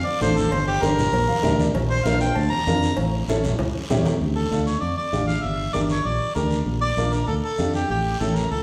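Fiery and danceable, this short cumbia excerpt in D harmonic minor moves at 195 BPM in 4/4. A mellow, roomy harmonica solos up front over a dark, round fingered electric bass, while a woody, boxy upright piano slips in a fill at 1.1 seconds, bright, low-tuned congas sit distant in the background beside a raspy guiro, and ringing metal-shell timbales and cowbell sit close in the background before dropping out at 4.1 seconds. The harmony cycles through Dm, Gm, Bb and A7 inside a reverberant recital hall.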